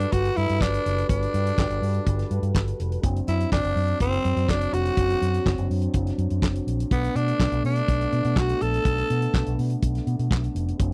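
A growling tenor saxophone leads this celebratory, glamorous disco excerpt at 124 BPM, its raspy, gritty solo line sitting up front with light vibrato until it drops out at 9.6 seconds. Beneath it, a fingered electric bass pushed through an envelope filter sounds bright and punchy, while a soul drum kit with a fat snare, tight kick, hi-hat and handclaps keeps a straight 4/4 pulse. A mellow French horn section holds smooth sustained chords through Gmaj9, D7 and Bm7, all captured in a dry, close 1970s-style studio sound.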